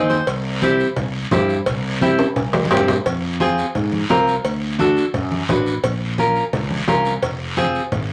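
A straight cumbia groove in common time pushes this short, passionate and danceable latin excerpt forward. A fingerpicked nylon-string guitar with fresh strings sits up front in classical style, opening with a fill at 0.0 seconds before carrying the accompaniment through a minor-tinged progression that moves from C to Fm, D and Bbm. Underneath, a fretless electric bass plays low and bright, heard direct and amped. The percussion fills out the pulse: a raspy guiro, a close, dry cowbell and timbales with a ringing metal shell, and low-tuned, thin-skinned congas set back in the mix. A drum fill from 2.2 seconds leads into a new section at 3.1 seconds, and a lively club reverb gives the whole band a sense of place.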